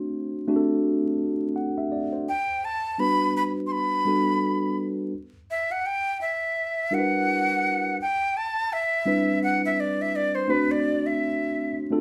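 Soulful and sultry, this R&B excerpt moves at 84 BPM in 4/4 with a swung sixteenth-note feel, set in E minor and tuned slightly sharp to A4 = 442 Hz. A mellow tine electric piano carries the accompaniment from the first moment to the end, its clean tone heard through its built-in speakers and placed up front. At 2.3 seconds a breathy, bright jazz flute enters with the melody, its metal tone showing vibrato, a crisp chiffy attack and a reedy edge, touched with slapback echo. From 5.1 seconds the flute takes a solo over chords moving through Em9, D13sus4 and D7, after earlier passing from D7 to Gmaj7. The band sounds as if playing live in one room, bathed in wet studio reverb with a layer of vinyl crackle, cut from a longer piece.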